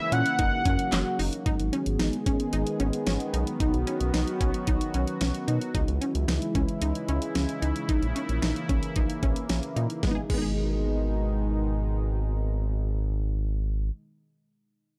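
Synth-pop in G# minor at 112 BPM, this melancholic, nocturnal passage is cut from a longer piece and moves in a straight 4/4. A bold, retro octave-doubled lead with chorus, vibrato and analog delay sings a brief melody between E5 and F#5, then stops at 1.2 seconds. Beneath it, a bright, resonant sawtooth pad with a slow attack and long release holds sustained chords through 13.6 seconds, while a lush, wave-folded unison pluck runs arpeggios through analog delay. A deep, round analog bass sits up front, and a layered electronic pop kit, with knocking kick, fat snare, hi-hat, handclaps and crash cymbal, drives the groove until it drops out at 10.4 seconds. The harmony moves from F# to G#m, then through B, C#m and A#dim before returning to G#m at 10.0 seconds, all heard through a dry, gritty hardware recording with cassette tape character and digital ambience.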